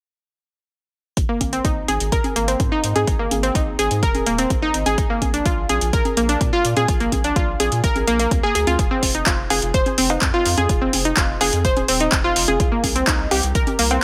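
A straight 4/4 groove at 126 BPM drives this bittersweet, emotional progressive house piece, with a deep, overdriven electronic kick and an up-front deep house kit of handclaps and metallic hi-hats arriving at 1.2 seconds, while dry congas and cowbell sit in the background and a thick, saturated sub bass pumps under sidechain compression. On top, a detuned sawtooth analog pluck plays bright, evolving arpeggios, also sidechain-pumped and colored by chorus, cassette tape, digital delay and a filter sweep, over chords moving from Ab5 to Bb to an F7 voicing before the harmony drops away at 12.6 seconds. Light reverb and digital ambience give the mix a sense of space.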